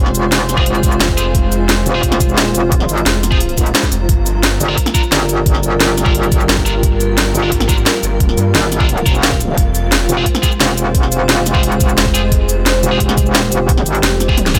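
Set in a light, digital-sounding ambience, this tense, mechanical piece of dark technical drum and bass runs at 175 BPM, moving from Fm to Gm7 and back to Fm. An up-front metallic FM wobble bass and a thick, detuned sawtooth bass growl beneath a moody analog pad with sidechain pumping and a blurred granular cloud pad in the background. A crisp kit of cracking snare, hi-hat, cabasa and toms drives the groove, joined at 0.6 seconds by a knocking electronic kick and bright, double-tracked distorted guitar stabs with digital delay, before a drum fill at 14.4 seconds.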